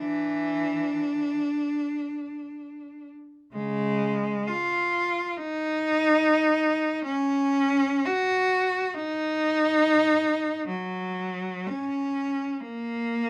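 Lyrical and serene, this short classical fragment, cut from a longer piece, features a single rich, bowed cello played expressively in free time with vibrato and portamento, ranging from C#3 to F#4 across its 13.3 seconds, captured up front by close, detailed microphones in a dry setting yet carrying a somewhat distant quality.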